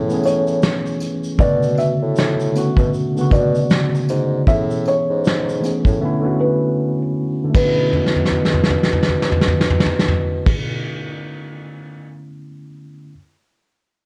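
Worn, warbling cassette tape with light reverb wraps this melancholic, reflective lo-fi hip hop excerpt at 78 BPM in B dorian, where a soft, felt-muted upright piano carries the melody over a slightly out-of-tune, lightly overdriven tine electric piano, a bassoon bass line with light vibrato, a dark-cymbaled brush drum kit that drops out from 6.0 to 7.5 seconds before a fill at 7.9 seconds, and a jingly tambourine in the background.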